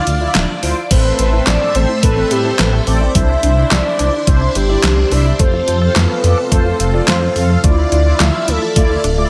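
A straight 4/4 pulse at 107 BPM drives this cinematic, nocturnal synthwave excerpt in A minor, built on an overdriven, knocking electronic kick from 0.9 s and a pop drum kit with a fat snare, handclaps, hi-hat and crash cymbal soaked in gated reverb, all over a deep, rumbling detuned saw bass sitting up front. A soft, round, octave-layered synth lead carries the melody through chorus, phaser and tape echo, while a lush vintage string machine holds sustained chords with ensemble chorus and sidechain pumping, mellow brassy synth stabs add a dark glow, and a very quiet, punchy unison pluck ripples arpeggios from 0.9 s. The harmony moves from Dmadd9 through Amadd9, Cadd9 and F before returning to Dmadd9, all set in light digital ambience.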